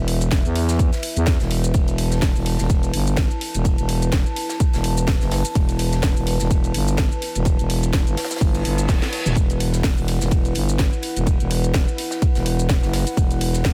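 A growling, thick FM bass with overdrive and sidechain pumping sits up front throughout this swaggering, gritty bass house excerpt, which moves in 4/4 with a swung sixteenth feel. Alongside it, a punchy electronic kick drum enters up front at 0.3 seconds, layered with a garage kit whose cracking snare, hi-hat, shaker and toms add rough edges. Further back, an acoustic studio kit contributes an airy, polished layer of hi-hat, ride cymbal and a medium-tuned snare, with its cymbals and hats filtered and pumping with the sidechain. A dark analog pad holds moody sustained chords, built from detuned sawtooth, square and triangle tones with a sub octave, a moving notch, chorus, a slow attack and a long release, and it pumps along as well. A reverse cymbal arrives at 8.6 seconds and leads into a drum fill that ends at 9.4 seconds. The whole mix sits in a small room ambience and sounds dense and heavily limited.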